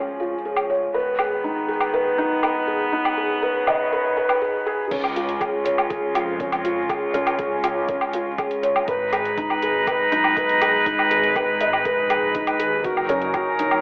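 A felt-muted upright piano sits up front, its soft, intimate riff carrying audible action noise and trailing through a digital delay, in this hypnotic, cinematic slice of piano and strings electronica cut from a longer piece. Beside it, a dark string quartet holds sustained chords with a nasal, reedy gut-string tone and light vibrato, its bowed lines pumping under sidechain compression. A deep house drum kit with crash cymbal, hi-hat and woodblock comes in at 0.6 seconds, giving the opening build-up a tape-warm, layered feel. At the drop at 4.9 seconds, a rich bowed double bass section and a deep electronic kick join in the background, the bass also pumping with the sidechain, as the harmony moves between Db and Abm before landing on Gb6. A lush hall reverb mixes with small room ambience, and a high-pass filter gives the whole a thin, telephone-like colour.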